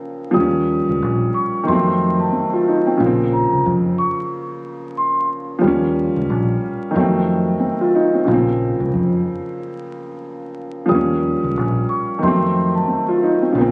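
A dark, mellow concert grand piano sits up front with audible action noise and deep bass, carrying the chords of this tough, reflective boom-bap hip-hop cut from a longer piece, swung on the sixteenths and cycling through Eb7, F7b9 and Bbmadd9. A soft-malleted vibraphone with its motor off adds a ringing, metallic melody through a digital delay from 0.3 to 5.3 seconds and again from 10.9 seconds, while a round, amped fingered electric bass holds the low end from 0.4 seconds. The whole take sounds captured on a phone in the room, with club reverb, vinyl crackle and compression giving it a gritty, lived-in feel.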